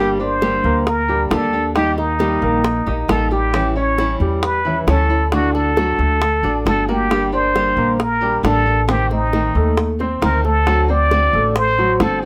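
A straight 4/4 Cuban son and guajira groove, with tight, high-tuned bongos played by soft hands joining at 0.4 s over a woody, thumpy pizzicato upright bass on gut strings, sets a warm, nostalgic mood in this fragment from a longer piece. Up front, a plunger-muted trumpet sings the jazz-style solo melody with wah-wah tone, vibrato and scooped notes, while a bright fingerpicked flamenco guitar and a clear, polished grand piano playing arpeggios fill in the harmony. The close, detailed recording carries light reverb over a minor-key progression that moves through Gm, Eb, A7, D, Adim and D7.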